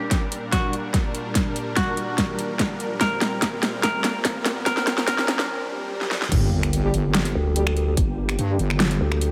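Heavy wobble dubstep at 145 BPM in a half-time 4/4 feel, this chaotic excerpt in G harmonic minor builds from a bright, clean semi-hollow electric guitar melody with spring reverb and digital delay over huge detuned supersaw chords with sidechain pumping, a very quiet riser, swell and sub drop, a punchy electronic kick and an overdriven big-room kit of huge snare, metallic hats, finger snaps and crash, through a drum fill and brief break until the drop at 6.3 seconds brings an up-front square-and-sine wobble bass, mellow background brass stabs with light vibrato, and a nasal, dark vowel-sweep wobble bass from 7.4 seconds.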